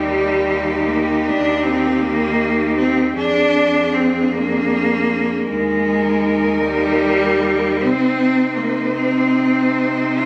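An up-front, focused bowed cello carries the accompaniment beneath a smooth cello melody with vibrato, a background second cello line with a warm glow, and a close, rich cello bass, all four sounding together throughout this tender, lyrical classical fragment in a rubato 12/8, caught on a phone in a studio with moderate scoring-stage reverb.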